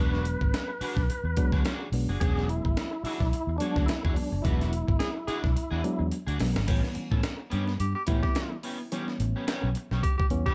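Gritty and playful, this funk excerpt struts at 107 BPM in E mixolydian with a light sixteenth-note swing, moving from an E9 groove to A9 at 6.7 seconds. A percussive, lightly overdriven tonewheel organ with key click and fast rotary speaker carries the melody until 6.1 seconds, over a compressed breakbeat kit with a thumpy kick and high-tuned snare sitting up front, a dark, foam-muted fingered bass, a twangy guitar at the edge of break-up washed in lush chorus, and reedy, worn electric piano stabs with fast tremolo and tape echo. A breathy tenor saxophone with scooped notes and a smooth top enters at 5.0 seconds on a second line, in the midst of a band accent that, joined by a drum fill, leads into the new section, all in a light reverb.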